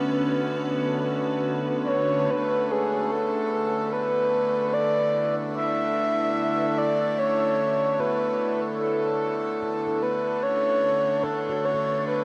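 A breathy, flute-like synth lead carries the melody up front from 1.8 s, its soft tone shaded with vibrato, chorus, delay and shimmer reverb. Beneath it, a reedy, nasal hand-pumped harmonium holds a low drone while a detuned, morphing wavetable pad sustains bright chords from the opening, swelling in a gradual fade-in from 2.3 s, when a very quiet, ringing handpan also enters with dry, close-miked arpeggios. This peaceful, weightless ambient piece is cut from a longer work and set in a huge, wet reverberant space.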